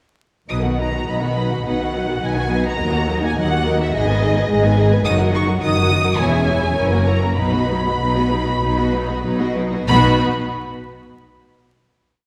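A distant, roomy sound from a scoring stage with a long, wet reverb and a faint vinyl crackle frames this brief, cheerful classical-period movement for string orchestra in B major, moving at a spirited 94-108 BPM with a rubato feel. Expressive first violins carry the melody with vibrato, while the second violins and violas share a lush rocking two-note figure and sustained chords, the cellos sit in the background with bass on the beats, and the close, vibrato-rich double basses double the bass line. All five sections play together from 0.5 s, working through a short progression from B to an F#7 that resolves back home, before a final chord rings out from 9.9 s to the close.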